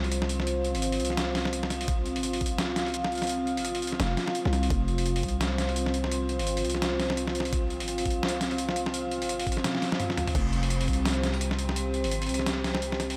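Soaked in a huge, dreamy ambient reverb, this spacious, tense excerpt of half-time drum and bass in F minor moves at 170 BPM with a swung sixteenth feel, opening on an F5 chord. A dark, detuned analog pad with chorus and sidechain pumping holds sustained chords above a growling, buzzy 808-style bass with tube saturation, while an eerie, metallic FM drone warbles in the background. A gritty, pitched-down boom bap sampler kit sits up front with overdriven snare, hi-hat, toms and crash, joined by a knocking, layered electronic kick that appears in short bursts before returning for a longer stretch from 7.5 s to 11.0 s, with a drum fill at 9.6 s.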